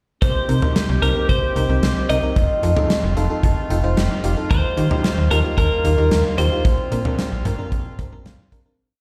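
At 0.2 seconds this short synth-pop piece opens at 112 BPM in a straight 4/4, with a cool, nocturnal mood in C dorian. A bright, clean, twangy twelve-string electric guitar carries a compressed, motif-based melody through digital delay, while a distant, roomy woodwind section holds a classical-style sustained pad with light vibrato. Underneath sit a sequenced, slap-like FM bass with a snappy, metallic attack and a huge arena drum kit, both up front, the kit pairing a punchy kick and medium-tuned snare with a drum-machine beat and syncopated toms. From 0.5 seconds a glassy, bell-like FM electric piano with chorus adds off-beat chords in close voicing and plays fills. The harmony moves through Cm7, F7, Ebadd9 and Bbadd9, and a fade-out begins at 6.6 seconds, with the guitar stopping at 7.4 seconds. The sound carries light reverb and a small-room ambience, as if played through a big sound system in a bare room with large studio reverb.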